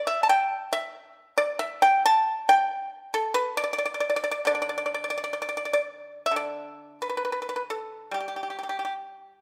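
A solo pipa sits up front, its fingerpicked tone dry and percussive, with a gentle warmth behind each plucked note. The music is Chinese traditional in a serene, elegant mood, set in the D zhi mode and moving at a free, rubato pace of roughly 63-70 BPM in 4/4. The pipa covers a span from D3 up to A5, carrying the whole piece alone from 0.0 to 9.4 seconds. An opening passage gives way to a new section at 6.3 seconds. A moderate recital hall reverb surrounds the instrument, lending the brief fragment, cut from a longer piece, a sense of open space.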